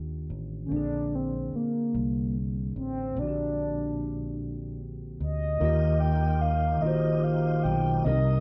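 The recording sounds like a band playing live together in one stone room, with a wet reverb that lingers for about 1.4 seconds. This short excerpt of a slow, intimate R&B piece moves in 6/8 at 49 BPM in Eb major, passing from Ebmaj9 to Bb7 and settling on Ebadd9. A clean tine electric piano, heard through a combo amp, carries the accompaniment up front from the start, alongside a dark, round fretless electric bass with a direct, amped tone. At 0.7 s a mellow, horn-like synth lead takes the melody, its sawtooth tone shaped by a filter sweep, a soft attack, chorus and vibrato as it sustains long notes. At 5.6 s a full tonewheel organ enters lower in the mix with sustained chords, shimmering with chorus vibrato and a slow rotary speaker and lending a warm glow to the closing passage.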